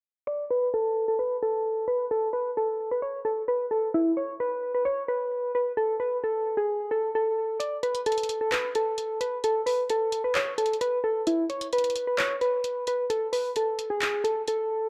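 Soft, round electric-piano-like synth keys open this wistful yet triumphant half-time trap and hip hop piece, carrying an up-front melody through chorus and a low-pass filter sweep across the first 7.6 seconds. At that point an electronic trap kit of handclaps and bright hi-hats enters for the second section, sitting well beneath the keys with a small-room character. Over it all lie a moderate hall reverb and the worn, warbling pitch drift of old cassette tape.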